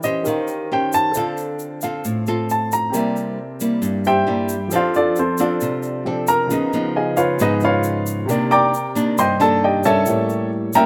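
Wistful and smooth, this 10.9-second bossa nova fragment at 134 BPM in 4/4 features a baby grand piano up front with a warm, short-sustained tone taking the melodic solo. A clear concert grand with deep bass, a small-sounding fingerpicked nylon-string guitar and a grainy, bright egg shaker kept close and dry accompany it through chords such as Eb13, Dm7, C#9 and A7b9, all set in light reverb.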